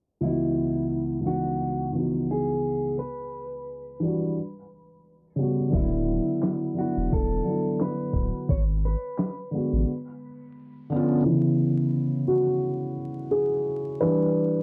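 A swung 4/4 pulse at 87 BPM carries this melancholic, nostalgic lo-fi hip hop fragment in C# phrygian, cut from a longer piece and moving through jazzy chords from C#m11 to Em7. A felt-muted upright piano plays accompaniment from 0.2 seconds, soft and intimate with audible action noise and a tape-worn haze. Over it, a dark electric guitar at the edge of break-up carries the melody until 9.5 seconds, its picked notes colored by vibrato, analog delay and a low-pass filter. At 5.7 seconds a thumpy, sampler-style drum kit of kick, fat snare, hi-hat and handclaps arrives with overdriven 12-bit grit, joined by a deep, saturated sine sub bass. The drums drop out just before the piano takes a solo from 11.2 seconds, with a filter sweep running across it. The mix is dry and gritty, with vinyl crackle and a muffled top end that keep every part close and up front.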